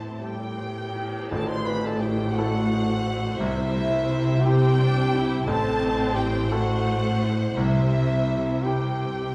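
Lilting in a free, rubato 6/8 with uneven beats, this cinematic, emotional film score excerpt carries a longing, bittersweet mood. A mellow duduk sings a solo melody from 0.2 s, full of vibrato and scooped folk-style notes, over a rich, lush violin section melody, a distant, warm second violin line, clear, polished grand piano, a viola section with portamento, a smooth, even cello bass and quietly ringing fingerpicked harp arpeggios, set in a wet scoring-stage reverb. At 1.3 s a dark, bowed double bass section enters on an ensemble accent, joined by a very quiet, close and dry tam-tam until 4.1 s, as the harmony moves between Am and C.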